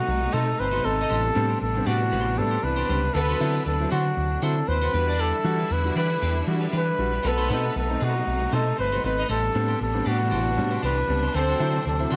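A breathy, whispered flugelhorn carries the melody of this sultry, danceable disco excerpt at 117 BPM, up front with a soft attack, light vibrato and a slapback echo. Beneath it from the start, a grand piano sits in the background and a bright studio string section holds lush, intense sustained chords. The bass enters at 0.1 seconds: a hollow-body short-scale fingered electric, dark, round and punchy, placed up front with a 16th-note swing in the groove. A clean, twangy picked electric guitar adds bright accompaniment from the background, and from 0.6 seconds a symphonic violin section plays a focused, smooth-topped second line with vibrato. The harmony circles through B7b9, Am11, D7 and Em7 in a small room with light reverb, rounding out this cut from a longer piece.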